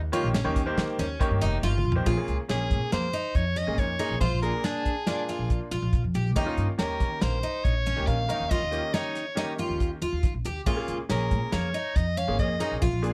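Brooding and tense, this progressive instrumental band piece moves at 140 BPM in an uneven 5/4 with a straight feel in Bb dorian. Woody pizzicato upright bass and a dark, dry soul drum kit anchor the groove, while a bright baby grand piano with audible action noise provides accompaniment and a shimmering, octave-doubled twelve-string acoustic guitar picks arpeggios over chords moving from Eb7 through Bbm7 and Bb7. After a drum fill at 1.6 seconds, an edgy, forceful soprano saxophone with vibrato takes the melody up front from 2.5 seconds, all captured close and dry in this cut from a longer piece.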